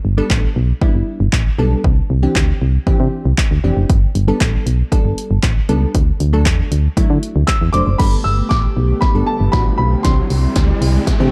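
A round, punchy FM bass with sidechain pumping opens this euphoric, summery dance-pop excerpt at 117 BPM in G major. A crisp, detuned wavetable chord stab and a punchy analog drum machine join almost at once. The drums sit up front, with tape-warm kick, snare, handclaps, hi-hat and crash cymbal and a short room on the snare, clap and hats, while the mellow stab carries a filter sweep and moving notch over chords cycling through Gadd9, Cadd9 and D. At 7.5 seconds a baby grand piano with an open tone and short sustain takes the melody high in its range. From 8.0 seconds a shimmering, chorused pulse-width pad adds sustained retro chords as a drum fill drives a build-up, an electronic riser joins at 9.1 seconds, and the dark production keeps reverb to a minimum.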